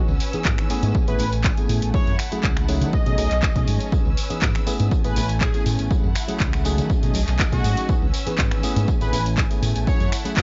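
Filtered disco house with a groovy, nostalgic feel, this clip from a longer piece cycles through a C#m7, Amaj7, F#m7 and B13 progression in a steady four. A punchy electronic kick sits up front, joined by an analog drum machine of finger snaps, handclaps, hi-hat and tambourine whose cymbals, hats and percussion pump against it, plus a very quiet, close acoustic tambourine. A dark, round fingered electric bass and a clean tine electric piano heard through a combo amp with phaser carry the groove. Behind them, a distant, lush symphonic violin section holds sustained chords with intense vibrato. From 1.1 seconds, a bold, fat analog synth brass lead with detuned sawtooth tones, chorus and an evolving filter sweep carries the melody. The piano, strings, bass and brass all pump and are low-pass filtered, and the mix is dry with a muffled top end.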